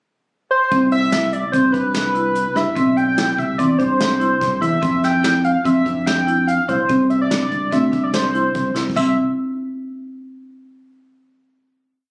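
Progressive instrumental band music in a driving, bright 5/4 at 145 BPM in C major, where a hollow, bold sawtooth lead with an added fifth, chorus and plate reverb carries a motif-based melody from 0.5 seconds over a woody marimba ostinato in arpeggios, a bright, direct fingered electric bass locked to the kick drum, and a vintage brush kit with dark cymbals and a rolled-off top, all heard through a phone-in-the-room club ambience with compression, moving through Cmaj7, F5 and Csus2 to a drum fill at 8.8 seconds and a final chord from 9.0 seconds.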